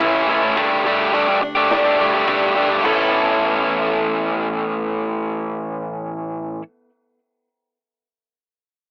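A lo-fi home cassette recording with a thin, telephone-like tone and light reverb carries this bittersweet, cathartic quiet-loud alternative rock clip: an up-front cranked stack guitar drives an overdriven riff over Aadd9 and Gsus2 chords, a full-bodied dreadnought acoustic plays picked arpeggios with tape echo in the background, a growly, amped electric bass sits very low in the mix, and a big-room rock kit with a punchy kick and bright cymbals plays very quietly until 3.0 seconds.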